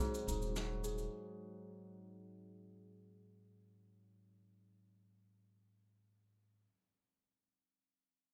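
A light reverb gives this short folktronica fragment, cut from a longer piece, an autumnal and wistful air in straight 4/4 time. A warbling, lo-fi pad sits dark and vintage in the background, its detuned sawtooth and triangle tones sustaining a G#7 chord with chorus and a soft plate sheen. Up front, a ringing, thumb-plucked Celtic harp plays arpeggios through a low-pass filter, digital delay and plate reverb. Brushed cabasa and a medium-tuned snare sound distant and roomy, while a deep, round sine sub bass joins at 0.3 s with a fast attack. The opening passage fades out, and from 1.1 s the harp carries on alone until 6.8 s.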